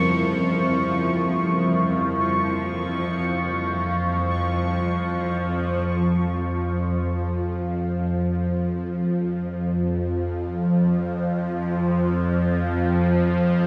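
Opening on a Db chord in free time, this desolate, ominous dark ambient drone sets a deep, moody pad with a sub octave and chorus beneath a tense, string-like bowed drone that sits up front with phaser and vibrato, while a bubbling, resonant filtered texture glints high above, until at 5.9 seconds the pad and texture stop and the drone carries on alone to 13.7 seconds inside a cavernous cathedral reverb.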